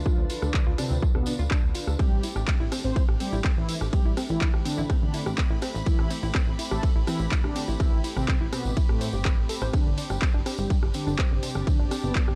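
Dry and gritty, with a cassette-tape grain, this short cut from a longer melodic techno track moves at 124 BPM in a straight 4/4, its mood melancholic and dramatic as the chords shift from Dm to Am7 and then to Gsus4 at 9.7 seconds. Up front, an overdriven, layered electronic kick drives the groove, re-recorded in a large room, while a tape-warm analog drum machine adds handclaps, hi-hat, ride cymbal and rim click from a small room, and a jingly acoustic tambourine sits distant in the background. A punchy, funky, wave-folded analog bass with a fast, decaying filter pluck pumps against the kick in the low register. The lead is a mellow, round, dark synth brass with chorus, vibrato, a filter sweep and tape echo, carrying the melody in front of a warbling, lo-fi pluck whose detuned arpeggios drift behind it through the same echo. In the background, a smooth vintage analog pad holds sustained chords, and a cloudy, blurred granular pad with a slow attack and long release evolves in its own reverb, both breathing with sidechain pumping.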